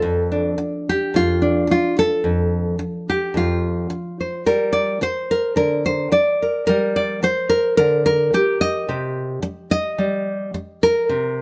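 A bright nylon-string guitar, fingerpicked and up front, carries this short folk passage on its own, its deep classical tone spanning F2 to Eb5 in a straight 4/4 feel. The hopeful, gentle harmony moves from F6 to Gm at 4.5 seconds and on to Cm at 8.9 seconds. Close, detailed microphones catch the guitar in light reverb, with lossy compression artefacts audible in the sound.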